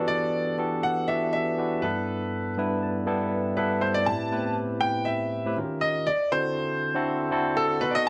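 A moderate plate reverb with a 2.6-second tail frames this short pop excerpt, lending an urban, nocturnal mood at 120 BPM with a light swing in A dorian. A barky, lightly overdriven tine electric piano through a combo amp, with subtle chorus, carries the accompaniment up front from 0.0 seconds and adds a fill between 2.6 and 4.1 seconds. A clear, intimate concert grand piano with audible action noise takes the melody, while the harmony moves from Em11 and G6 into Am7, D#9 and D7 as the second section begins at 4.1 seconds.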